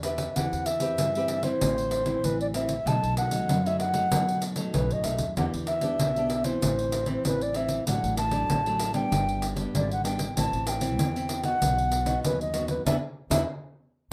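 Samba and choro in E minor at 96 BPM in a straight 4/4, this lively, nostalgic fragment is cut from a longer piece. A reedy baroque flute carries the melody between B4 and A5, its wooden, airy tone shaded with vibrato and tongued notes. A fingerpicked nylon-string guitar with a classical touch supplies the accompaniment, while a pizzicato upright bass with steel strings gives a woody low end reaching down to G1. Up front, a jingly pandeiro played with hard hands keeps the percussion going in a live room sound. The harmony moves from Cmaj7/E through Am and B7 to Em7, passes through D/A, G and B, and lands on an E5 as the band hits an accent from 12.9 to 14.1 seconds. The whole has the moderate studio ambience and rough feel of a home demo.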